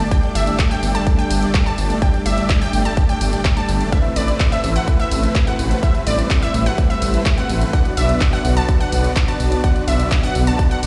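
A punchy, up-front electronic kick drives this euphoric, anthemic festival progressive house excerpt, joined by a big-room kit of handclaps and hi-hat, a thick detuned saw bass with chorus, a huge compressed supersaw riff and bright, lush unison pluck arpeggios with digital delay. The bass, supersaw and pluck pump against the sidechain along with soft, floating bowed string chords in the background, moving from Gsus2 to Amadd9 to Bm, as if played on a big sound system in a bare stone room.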